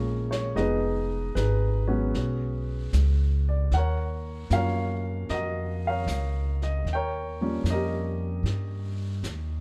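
A swung 4/4 pulse at 76 BPM carries this intimate, tender jazz ballad excerpt, where an up-front grand piano with short sustain accompanies through chords such as F#maj9, Bm69 and D#m9 over a woody, thumpy pizzicato upright bass, while a natural-sounding brush kit with a medium-tuned snare and hi-hat enters at 0.3 s and sits quietly behind them in a dark production with light reverb.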